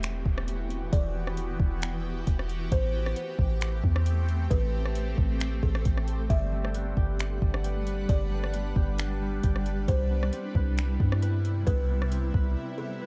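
A buzzing, woody kalimba carries the melody through this short, ethereal cloud-rap excerpt at 134 BPM in a half-time feel, floating over a shimmering, chorused ambient pad, a deep, round 808-style bass and an up-front R&B drum kit of finger snaps, rim clicks, metallic hats and a soft kick with 12-bit sampler grit, while a very quiet downlifter sounds until 2.7 seconds, a ringing concert harp joins with arpeggios at 6.3 seconds, and the chords move from Emadd9 through Am7 and Gmaj7 to Cmaj7 before a brief break at 12.6 seconds in a dark, spacious digital ambience.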